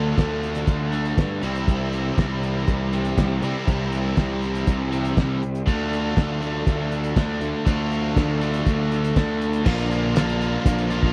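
Brooding and gritty, this 11-second classic rock clip in D minor at 120 BPM sets two bright, overdriven picked electric guitars on a riff over a growly, punchy fuzz bass up front, while a muffled, cloth-damped drum kit with a fat snare and dark cymbals joins at 0.2 seconds, a very quiet, thick tonewheel organ holds sustained chords through a slow rotary speaker, and the dry, close 1970s-style sound moves from Dm through C back to Dm before landing on Bb at 9.7 seconds.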